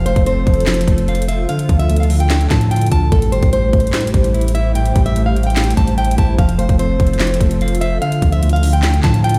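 A half-time trap groove drives this dark, eerie hip hop excerpt: an up-front electronic kit of hard-clipped kick, sharp snare, metallic hi-hats and handclaps arrives at 0.1 s over a deep, sine-toned 808 bass with long, decaying notes. A fingerpicked, plugged-in jumbo steel-string acoustic guitar carries a full-bodied melody through tape echo, while a clean, fingered electric guitar plays accompaniment and a hollow, flute-like vintage pad warbles in the background with ensemble chorus, moving through F, Dm and Am7. The mix sits in a bare stone room's reverb, as if played on a big sound system.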